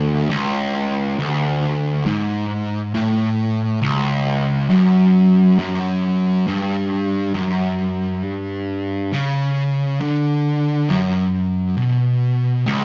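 A double-tracked fuzz guitar sits up front, playing solo for the full 12.8 seconds in a low register reaching from C#2 to D3. Its picked electric tone is distorted and compressed, with a thick, saturated weight that suits the ominous, brooding mood. This metal fragment, cut from a longer piece, moves at a slow 68 BPM in straight 4/4. A wet small-room reverb wraps the guitar in a close, boxy space. The rough rehearsal-room sound carries tube saturation, and its top end is rolled off above 7.9 kHz, giving the whole take a dark, murky edge.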